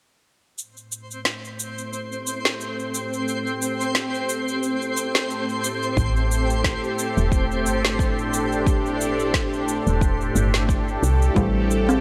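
A bowed-like drone sits up front in this meditative, earthy piece of organic downtempo, its detuned sawtooth strings tense and bright, carrying a phaser, vibrato and sidechain pumping while a filter sweep runs across it from 0.6 to 11.4 seconds. Moving at 89 BPM in 4/4 with a light swing on the sixteenths, the excerpt rests on A minor, opening on an Am7 chord. Electronic cabasa and a woody snare open at 0.6 seconds, soon joined by a twinkling granular texture whose sparkling, octave-up shimmer floats softly in the background. At 6.0 seconds a round, dark FM bass and a deep layered kick drum arrive to ground the groove. Near the close, a felt-muted upright piano with audible action noise and digital delay murmurs in the background, while a hollow, ringing kalimba adds thumb-plucked arpeggios, all set in a lush hall reverb before the cut.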